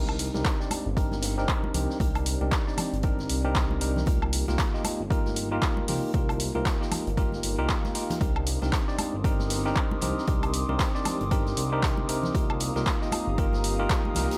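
A swung sixteenth-note groove at the heart of this moody, late-night deep house excerpt is driven by a punchy, overdriven electronic kick up front and an overdriven house kit of handclaps, hi-hat and woodblock, with soft-handed congas and a natural, acoustic big-band kit of hi-hat and snare in the background, while a smooth, detuned synth bass pumps beneath worn, slightly out-of-tune tine electric piano stabs through a filter sweep and analog delay, a very quiet, full-bodied ambient pad hovers throughout, and a chorused dark analog pad with a slow attack joins at 8.2 seconds as the harmony moves from Cm9 to Ebadd9 at 12.3 seconds in a small, lightly reverberant room.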